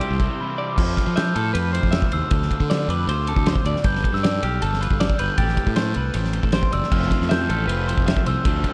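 A dark, dry production frames this playful, wistful math rock and midwest emo excerpt at 156 BPM, where up-front loose indie drums with a fat snare and tight kick and a growly, punchy fuzz bass drive beneath two clean, compressed twelve-string electric guitars (one warm with spring reverb playing accompaniment, the other twangy in the background with arpeggios), while a mellow, bell-like glockenspiel played with rubber mallets carries the melody from 0.4 s over chords moving through Fmaj7, Dm7, G9 and Am9, and a double-tracked, crunchy overdriven guitar riff with spring reverb opens the excerpt and returns at 6.9 s.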